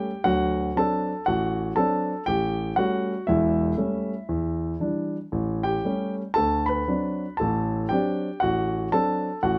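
Sophisticated and swinging, this short solo jazz excerpt moves at 118 BPM in 4/4 with a swung eighth-note feel and a rubato looseness. A single warm grand piano carries everything, sitting up front with short sustain across a range from E1 to B5, moving through D7, A7, Em7, A7 and back to D7 by 6.3 seconds. Close, detailed microphones and light reverb keep the sound intimate and clear.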